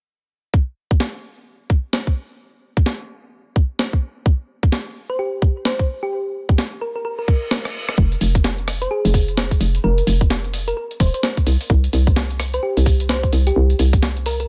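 A tight, layered electronic kick drives this bouncy, skippy two-step UK garage excerpt, joined by a gritty, pitched-up breakbeat kit of hi-hat, rim click and snare, while a round, tine-like thumb-piano pluck with chorus and dub echo enters at 5.1 seconds; then, after a reverse cymbal and a drum fill as the kick drops out at 7.5 seconds, a hollow, knocking FM bass arrives at 8.0 seconds in a dry, up-front mix.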